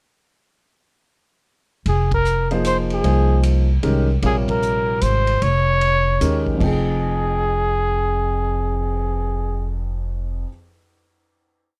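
A swung waltz pulse drives this brief, intense and cool modal jazz piece, where a mellow trumpet with vibrato states a motif-based melody up front over a woody, thumpy pizzicato upright bass in a two-feel, a vintage drum kit with dark cymbals, a punchy kick and a ride pattern, and an intimate grand piano with audible action noise and long sustain comping in syncopated quartal voicings, with band accents at 2.1 and 4.4 seconds before the group settles onto a final chord at 6.6 seconds, all in a dry, close recording.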